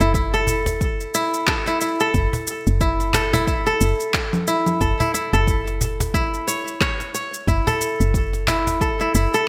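Organic downtempo with a hypnotic, gently swung sixteenth-note feel, this short cut from a longer piece rests on a single chord throughout. A bright, fingerpicked kora plays ringing arpeggios up front, its crisp acoustic tone trailed by a digital delay. Beneath it, a soft, round FM bass with a woody, dark character sits on one low note, its fast-attack, decaying tone colored by tube saturation and sidechain pumping. A layered electronic kit of shaker, handclaps and congas runs through gated reverb, while a deep, tape-warm electronic kick enters at 0.1 s and a snappy cajon with snares, close and dry, joins at 0.3 s. A moderate plate reverb and small room ambience frame the whole in a bright 1980s-style digital production.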